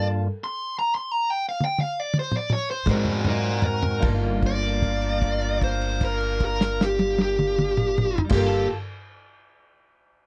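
A smooth, overdriven lead guitar sits up front in this soulful, smoky slow blues in G minor, picking a solo over the first four seconds before settling into a held note that carries to 8.3 seconds. The tempo runs at 50-60 BPM in a 12/8 metre with a straight feel, and the band slows down through the opening bars, with a stop in the first 2.9 seconds and a drum fill across the first four. A warm soul drum kit with tight kick, medium-tuned snare, toms and dark crash cymbals enters at 1.6 seconds, while a woody pizzicato upright bass with steel strings holds the low end up front alongside the lead. In the background, a dark upright piano, a fat tonewheel organ turning through a slow rotary speaker, and a mellow jazz-style horn section with light vibrato fill out the harmony, moving from a rootless Gm9 to Ab7 and back. A clean electric guitar with tremolo joins at 2.9 seconds, and the whole piece has the dry, close sound of a 1970s-style studio recording, cut from a longer performance.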